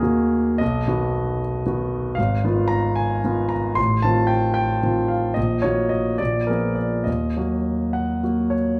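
A stormy, bittersweet romantic character piece for solo concert grand piano in Eb minor, flowing in a rubato 6/8 at roughly 66-78 BPM, with an intimate, polished tone, deep bass, long sustain and audible action noise, all bathed in the lush reverb of a large studio in this brief cut from a longer work.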